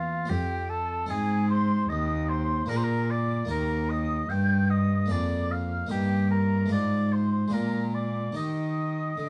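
The recording has a dark, warm production with light reverb, and it is cut from a longer piece. This baroque-style sonata movement with continuo sits in Eb major at 75 BPM in a straight 3/4, and it feels radiant and dance-like. The airy, mellow flute carries the melody high above with vibrato and tongued notes, while a soft-attacked oboe, heard from a distance in a roomy space, sings the second line beneath it. A close-miked, dry harpsichord with a full, plucked French-style tone supplies the accompaniment. The bowed cello, a single player with focused vibrato, stands up front as the strongest voice in the bass. All four parts play together across the full 9.3 seconds, moving through chords such as Bb7 and Fm7/Ab before settling on Eb at 8.4 seconds.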